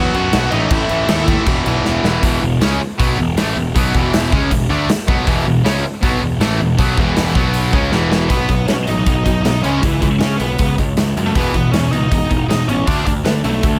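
A short cut from a longer punk rock track opens with distorted rhythm guitars, a growly fuzz bass and a brief bluesy lead guitar phrase, joined at 0.1 seconds by a big, up-front rock drum kit with punchy kick and bright cymbals, for a rebellious, upbeat drive in straight four. Two overdriven rhythm guitars sit in the background throughout, while a very quiet, double-tracked third guitar plays only until 2.2 seconds and again from 5.3 to 8.3 seconds. Drum fills mark the section changes, and after the second one the warm, distorted lead guitar returns at 8.3 seconds with a bluesy melody over a dry mix.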